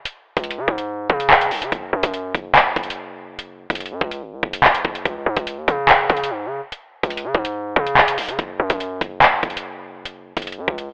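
A half-time drill groove at 144 BPM in 4/4 opens this menacing, tense hip hop excerpt, with the electronic drum kit arriving at 0.1 seconds and running to the end at 10.9 seconds. The produced kit sits up front, pairing a knocking kick with metallic hi-hats and handclaps, all carrying a tape-warm grit. At 0.4 seconds a hard-hitting 808-style bass joins, spanning F#1 to C#3 with a punchy, heavy sine tone topped by a noise layer, each note striking with a fast attack and then decaying. The bass also sits up front, though it is quieter than the drums. The whole passage holds a single section, and the mix has a telephone-like sound, with light reverb and a digital ambience that deepen its uneasy atmosphere.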